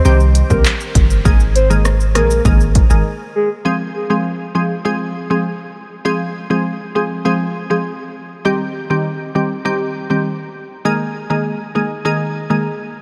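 A straight 4/4 dancehall groove at 100 BPM sets a tough, hypnotic mood in F minor, as a punchy, gritty deep house drum kit of kick, handclaps, hi-hat, rim click and shaker and a deep, boomy 808-style bass drive until 3.0 s beneath a round, sub-octave synth lead carrying the melody through chorus, phaser and analog delay, while a crystalline wavetable pluck with a filter sweep plays on alone after a brief break until 12.7 s over chords moving from Cm to Absus2 and Fm, in a dreamy mix soaked in huge ambient reverb, cut from a longer piece.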